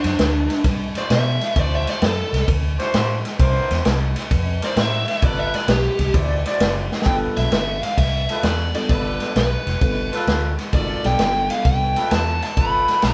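Rollicking and laid-back, this electric blues shuffle in G mixolydian swings at 131 BPM as a biting, overdriven lead guitar solos over mellow horn stabs, a round, foam-muted vintage bass and an up-front vintage drum kit with dark cymbals and a punchy kick, until a drum fill at 6.8 seconds leads to a reedy electric piano with fast tremolo joining from 7.1 to 12.0 seconds, all captured with light reverb like a band playing live in one room.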